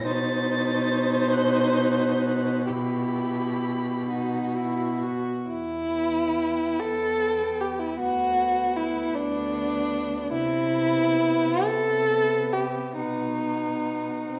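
Elegiac and yearning, this slow romantic string quartet movement in E minor sways in a rubato 6/8 at about 42-52 BPM, moving from an opening section into a second one at 5.5 s. The first violin carries a rich, softly attacked melody high in the background, while the second violin's woody, vibrato-laden line sits up front with a smooth top. Beneath them, the dark viola adds an airy, sul tasto accompaniment and the warm cello anchors the bass with an intimate, close tone, all set in a recital hall reverb.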